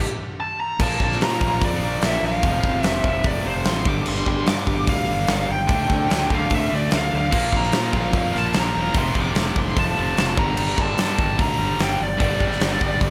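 A distorted, bluesy lead guitar opens alone before the band crashes in at 0.8 seconds, its slapback-echoed melody riding high over a driving, aggressive hard rock groove in a big arena-style hall. Double-tracked overdriven rhythm guitar picks out the riff, a growly fuzz bass adds grit, and an up-front acoustic kit hits with a fat snare, punchy kick and bright cymbals. At 7.3 seconds a scooped, high-gain guitar joins quietly in the background as the chords move from Bb through F and G5 to settle on Gm, in this section cut from a longer piece.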